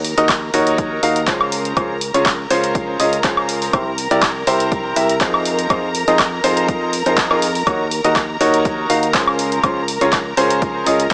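Light reverb and digital ambience give this bittersweet, soulful piano house excerpt a small-speaker sound, as an up-front, clear grand piano riff with tape echo and sidechain pumping rides over lush, distant bowed strings holding vibrato chords, a bright fingered electric bass, a punchy tape-warm analog drum machine of handclaps, hi-hat and woodblock, and an overdriven electronic kick that enters at 0.3 seconds, all moving through a swung groove over chords that start on Ebm7 and pass through Dbmaj7, C7 and Fm7.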